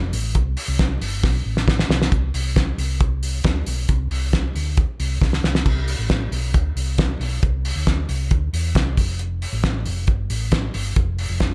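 A straight 4/4 pulse at 136 BPM drives this breezy, bright fragment of jangly indie pop in C major, cut from a longer piece. A hollow-body short-scale electric bass, played with the fingers, opens at 0.0 seconds, sitting low between F1 and E2 with a dark, round, punchy tone. The cloth-damped drum kit joins almost at once, thuddy and up front, with a fat snare, tight kick, dark cymbals across hi-hat and crash, and a gritty, saturated edge under a rolled-off top and gated reverb. Drum fills land at 1.2 and 5.2 seconds, each closing off a section before the music moves into its next stretch at 5.7 seconds. Overall the sound is dry and close, with little room reverb, leaving the drums slightly forward of the bass.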